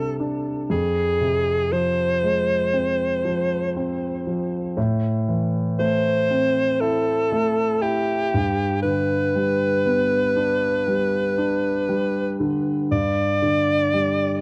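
Pop at a slow 59 BPM with a heartfelt, tender mood, cut from a longer piece and recorded at home on cassette in a small room with light reverb. A bright, punchy alto saxophone sings the solo melody up front with vibrato and a smooth top, while a concert grand piano with deep bass accompanies through chords moving from Csus2 and Fm to Am and G, before a new section opens on G5 at 12.9 seconds, both parts carrying the color of cassette tape.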